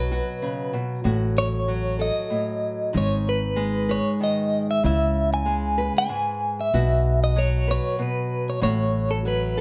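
In a straight 3/4 at 95 BPM, this intimate, reflective acoustic folk-pop ballad in C# minor moves through Bsus2, F#m/A, G#m, C#m7 and B5 chords across its 9.6 seconds, a fragment of a longer piece. A clean, compressed electric guitar carries the fingered melody with tremolo, set up front over a small, fresh-strung nylon-string guitar fingerpicking the accompaniment and a woody, warm pizzicato upright bass on steel strings anchoring the low end. All three parts play throughout, sitting in a moderate large-studio reverb.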